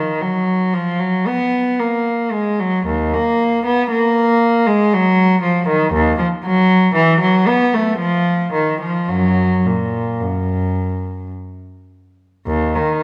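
Grave yet flowing, this baroque-style suite movement for unaccompanied cello unfolds in 3/4 at a slow 51-60 BPM, its pulse stretched and relaxed by rubato. A single bowed cello carries the whole passage, moving between Eb2 and Cb4 with a reedy, nasal gut-string tone and light vibrato in a period style. The player sits up front, yet the instrument's rich voice blooms into a recital hall reverb whose 1.7 s decay lends a soft halo to each phrase. The music settles into F# major from 5.9 s. Lasting about 13 seconds, this fragment is cut from a longer piece.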